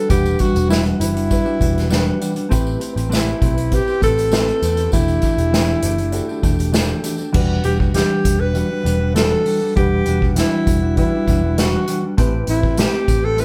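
A breathy alto saxophone carries the melody up front in this excerpt of wistful, mellow indie bedroom pop, its close-miked, whispered subtone tone shaped by soft attacks and a jazz-style vibrato. Beneath it, a dark, clean electric guitar played with the fingers adds compressed accompaniment colored by a warbly pitch drift, while a reedy electric piano with fast tremolo sits in the background through its built-in speakers. A vintage foam-muted picked bass gives a round, punchy low end, and an acoustic drum kit played with bundle sticks sits up front with a medium-tuned snare, punchy kick, hi-hat and crash cymbal. A jingly tambourine sits in the background until 7.3 s, when the music moves into a second section. The band plays live together in one large studio with moderate reverb at a straight, unhurried 99 BPM in E minor, drifting through Em9, Am9 and Em11 harmonies.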